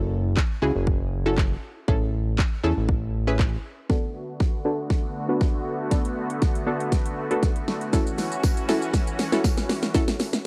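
Dry and cassette-hazy like a home recording, this bittersweet, driving dance-pop clip opens with a round, chorused analog pluck and a thick, detuned analog bass that pumps beneath it until 3.6 seconds, while a punchy, overdriven pop drum kit with fat snare, metallic hi-hats, handclaps and shaker sits up front; at 3.9 seconds a lush supersaw pad swells in on sustained chords under a filter sweep, drum fill and build-up, and a jingly tambourine joins faintly in the background at 7.9 seconds.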